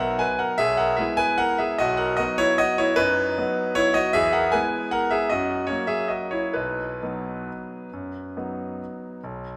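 A brilliant, up-front concert grand piano plays a sparkling, graceful classical waltz alone in B major and 3/4 at a rubato 127-168 BPM, its deep bass reaching down to B1 under melodies as high as G#5 as the harmony moves from B through E and F# back to B at 6.6 seconds, all within a moderate scoring-stage reverb in this short fragment cut from a longer piece.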